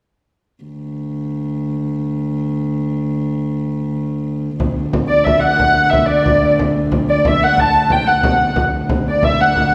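Festive and ancient in mood, this medieval dance moves in a straight 6/8 at 121 BPM, counted in dotted quarters, in D major, and is cut from a longer piece. A viola da gamba opens at 0.6 s, holding a ringing drone on a low D with a soft attack, light vibrato and an airy bow, sounding intimate and close. At 4.6 s a deep, large frame drum joins, struck with hard hands. A nasal, woody hurdy-gurdy enters at 5.1 s to carry the melody between D5 and A5, noticeably louder than the other two parts. The players sit back in a reverberant scoring stage whose long, wet tail surrounds the dance.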